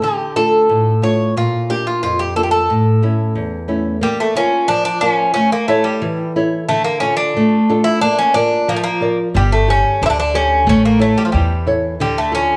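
Bittersweet and moody, this short excerpt cut from a longer Greek folk piece moves at 90 BPM in a straight 2/4. A picked Greek bouzouki carries the melody up front, its doubled strings giving a mellow yet metallic ring, with some of the courses doubled at the octave. Beside it, a fingerpicked nylon-string guitar supplies a small, warm accompaniment, also placed close to the listener. At 9.3 seconds a pizzicato upright bass enters with a woody, dark tone, grounding the final stretch. The harmony circles around Dm, Bb and A, with a Gsus2 lending a brief open colour before the return to Dm at 12.0 seconds. The band plays live together in one room, wrapped in a generous large-studio reverb.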